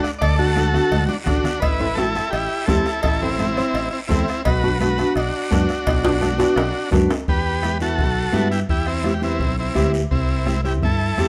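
Cumbia at a driving, danceable 170 BPM in E minor, led by an up-front, buzzy vintage combo organ with heavy vibrato over a full-bodied, fingerpicked nylon-string guitar whose finger squeaks can be heard, moving through D, Am and Bm before a second section on Em and C6 arrives at 7.3 s. A bright, direct fingered electric bass and ringing, soft-handed congas join at 0.2 s, while a soft-beatered bombo sits in the background and a raspy, dry guiro scrapes close by. Metal-shell cowbell and timbales ring out until 7.2 s, drum fills break in at 0.9 s and 5.9 s, and a moderate large-studio reverb surrounds this cut from a longer piece.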